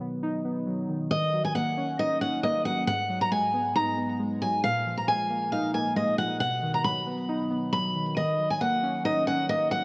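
Eerie and dark, this short hip hop excerpt moves at 136 BPM in 4/4 with a half-time feel, settling in Eb minor. Warbly lo-fi synth keys open the piece alone, their nostalgic, mellow tone blending triangle and sawtooth character with a fast attack and decaying notes, thickened by chorus and softened by a low-pass filter. At 1.1 seconds a picked steel-string acoustic guitar enters up front to carry the melody in a high register, its tone warm and filtered, with an auditorium quality. Beneath it the keys hold the accompaniment in a lower range, cycling through Ebm7, Abm7, Bb7sus4 and B chords before returning to Ebm7 at 8.2 seconds. Light studio reverb gives the hazy, shadowed mood a close, intimate sound.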